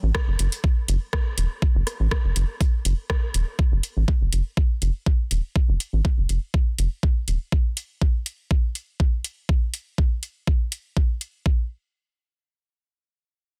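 A straight 4/4 pulse at 122 BPM drives this cool, hypnotic minimal techno cut in F# minor, built on a layered, overdriven electronic kick that knocks up front and runs to about 11.6 seconds, beside a booming analog drum machine with metallic hi-hats, a rim click and a softly clipped snare. A rubbery, hollow square-wave bass sits dark and saturated with sidechain pumping and a filter sweep, bouncing low until it stops at 7.4 seconds. The sound is dry, dense and heavily limited, cut from a longer piece.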